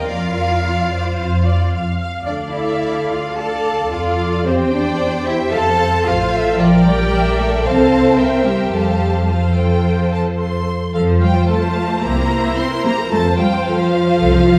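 A spirited, cheerful string orchestra movement in a quick classical-period style opens with all sections together, the first violins singing an expressive melody with rich vibrato and a soft attack while the second violins carry a focused line above. Violas give smooth, even accompaniment, lush cellos and an up-front, warm double bass section anchor the bass, and the rubato phrasing breathes within a wet recital hall reverb that places the ensemble further back in the room. At 10.9 s the music moves into a new section before this cut from a longer piece ends at 14.6 s.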